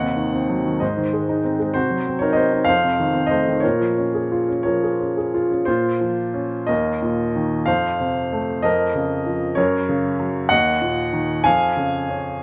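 Swaying in a rubato 6/8 at about 57-65 BPM, this melancholic, reflective fragment of a lyrical classical solo piano piece in Bb minor features a woody, intimate upright piano, placed up front with long sustain and audible action noise, spanning Eb2 to Ab5 throughout its 12.4 seconds as it moves from Cdim/Eb through F7 and Bbm7 before restating its opening idea at 5.7 s and settling on Db/F, all within a moderate scoring-stage reverb.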